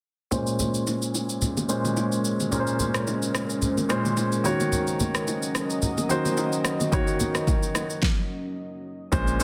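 Deep and hypnotic, this amapiano excerpt from a longer piece sits at 109 BPM in 4/4 with a lightly swung sixteenth-note feel, in Bb minor, moving from Bbm9 to Ebm7. A polished grand piano carries the accompaniment from 0.3 seconds, present and up front with short sustain and a low-pass filter softening its tone. Behind it, a moody, evolving pad of detuned sawtooth and sine layers with a sub octave holds sustained chords through chorus, built-in reverb, sidechain pumping and its own low-pass filter. A layered electronic deep house kit of deep kick, fat snare with soft clipping, smooth hi-hats, rim click and shaker sounds tape-warm and roomy, joined by acoustic congas and bongos struck with hard hands. A filter sweep runs through the passage to 9.1 seconds, overlapping a stop that begins at 8.0 seconds, after which a hollow, bouncy FM log drum bass with a noise layer lands on Bb1 at 9.1 seconds, all within light digital ambience and a dense, heavily limited modern master.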